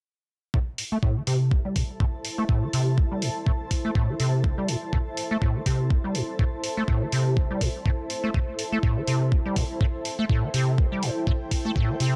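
Gritty and trippy, this acid house excerpt from a longer piece rides a gently swung 4/4 groove that sits on a single A minor chord throughout. A squelchy, hollow square-wave acid bass carries the riff from 0.5 seconds, up front and saturated with overdrive, ensemble chorus and analog delay, its resonant filter plucks decaying while a filter sweep runs across the whole passage. Beneath it, a thumpy, sampler-style electronic kick drum with a tape-warm, small-room character shares the front of the mix, joined at 0.8 seconds by a quieter analog electronic hi-hat. From 1.4 seconds a granular cloud pad drifts in higher up, its detuned unison blend of sine and sawtooth tones blurred, bright and evolving, bathed in its own reverb and pumped by sidechain. The overall sound is dry and gritty, with the feel of a hardware recording.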